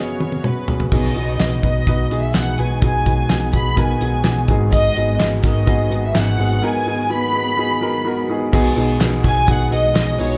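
Piano-driven pop with an uplifting, hopeful mood, cut from a longer piece, where a lush, bowed violin section carries the melody over polished grand piano, a round, punchy hollow-body picked bass and a damped 70s drum kit with a fat snare, tight kick and dark cymbals. A shimmering, ethereal pad with octave-up shimmer sits very quietly beneath, while distant group handclaps join at 5.2 seconds and a faint electronic swell enters at 6.4 seconds, just ahead of a break. The band sounds as if playing live in one large studio room, opening on a drum fill and moving through suspended, sixth and minor-seventh chords.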